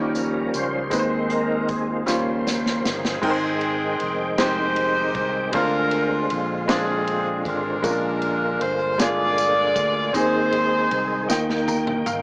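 A thick, lightly overdriven tonewheel organ takes a short solo through a fast rotary speaker and chorus vibrato, over clear, worn grand piano chords, a growly fingered electric bass, jingly tambourine and a polished big-band drum kit with a boomy kick. This opens a jubilant, hopeful slow gospel excerpt in a straight 6/8 at 52 BPM. A tight, bright saxophone section enters up front at 2.8 seconds with a jazz-style melody in light vibrato as the music settles into Ab lydian, while the tambourine drops out and returns at 7.8 seconds. Drums and piano add fills at the close, and the whole piece carries a moderate spring reverb and the small-speaker sound of a home cassette recording, with tape colouring the piano, organ and drums.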